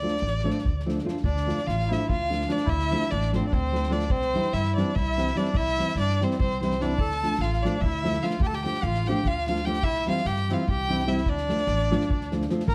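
Driving along at 293 BPM in an asymmetrical 7/8 with a straight feel, this restless, fiery Balkan wedding-band excerpt in D minor moves between D minor and C chords. A rich, focused violin, played by a single player, carries the bowed melody up front with vibrato and a smooth top, and a reedy, clear single-reed accordion joins on a second line at 1.2 seconds, over a thumb-plucked nylon-string guitar with a deep classical body and audible finger squeak. A woody, thumpy pizzicato upright bass anchors the bottom, while an airy, polished acoustic kit played with bundle sticks sits in the background with a punchy kick and medium-tuned snare, all wrapped in a dark production with light reverb.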